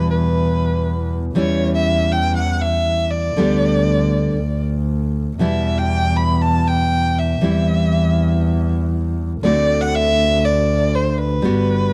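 A bowed violin sings out with expressive vibrato and portamento from the first second of this melancholic, sultry, rubato tango, set up front over a fingerpicked nylon-string guitar of full-bodied, deep classical tone and an intimate, warm double bass played sul tasto with a soft attack and airy bow, captured in a dry, close small room in the manner of a 1970s studio as the chords move from Em through G/D and C/E to D7.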